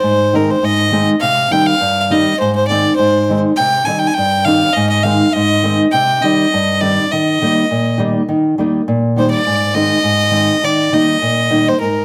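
A biting, nasal single fiddle carries the melody from the first moment, its airy bow sitting up front over a small, fingerpicked nylon-string guitar in this festive Balkan folk passage at 102 BPM in 2/4, set in Eb major and tuned slightly low, with A at 439 Hz. The harmony sways between Ab and Cm before landing on Eb, then passes back through Ab to Eb. At 8.3 seconds the fiddle breaks into a virtuosic solo that runs to the 12.0-second cut. Close, detailed microphones and light reverb give the fiddle an earthy presence and the guitar a warm one.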